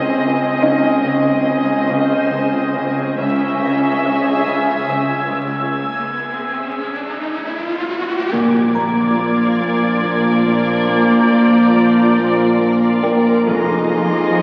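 This is a tense, uneasy suspense film cue in a slow 3/4 at 70 BPM, cut from a longer piece. A mellow, ringing Celtic harp riff leads the mix, while con sordino violins carry a veiled melody over a lush second violin line, soft-attack violas, close cellos and double basses, with all the muted strings sounding dark and carrying vibrato. Around them float a delicate, slightly out-of-tune music box with a tinkling, boxy sound and a reversed, detuned swelling texture with its own bright built-in reverb. A high layer of muted violins joins at 3.2 seconds, and an electronic riser builds toward an impact at 8.3 seconds, where a distant French horn section and a background trombone section enter with sustained chords over a shift from E to Bb. Soft-mallet timpani with a round tone arrive at 13.5 seconds on an Fm7 chord, and the whole recording sits in a roomy scoring-stage reverb with the crackle of a very old 78 rpm record.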